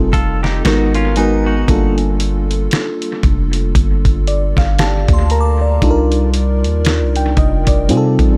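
A gritty, compressed sampler-style drum kit with a thumpy kick and fat snare sits up front alongside a deep, sine-toned 808-style bass, anchoring this sensual, moody contemporary R&B excerpt at 58 BPM in G minor with a 16th-note swing. A lush, dreamy FM electric piano with a soft pad layer, treated with chorus and tremolo, carries the F9, Abm9, Gm9 and Cm11 chords and plays a fill from 3.8 to 5.8 seconds, while a crystalline synth bell glimmers faintly in the background. A bright, twangy clean electric guitar adds chorused arpeggios from 0.1 to 2.0 seconds, and dub echo on every part except the bass gives the dry, reverb-light mix its echo-heavy character.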